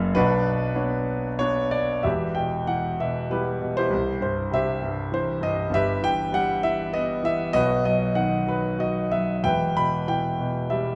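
A warm concert grand piano opens alone on a Bmadd9 chord, playing a lyrical classical line in 3/4 with uneven, rubato beats that lend it a moody, bittersweet cast. From 2.0 seconds the harmony settles through Em, C, Em/G and B before returning to Em at 9.4 seconds, the piano ranging from a deep bass up into its upper register. The instrument sits up front with a natural tone, framed by the lingering reverb of a recital hall in this short cut from a longer piece.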